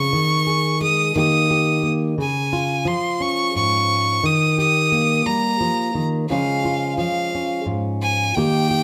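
A single bright violin carries the melody up front, its airy bow, vibrato and intense, close tone riding high over a full-bodied, fingerpicked jumbo steel-string acoustic guitar that supplies a warm accompaniment. This short excerpt of acoustic folk moves in an unhurried, straight 6/8 with a pastoral mood, its harmony shifting from Ebsus4 to Eb and Db. Both instruments sit up front in a moderate large-studio reverb that lends the duo a gentle sense of space.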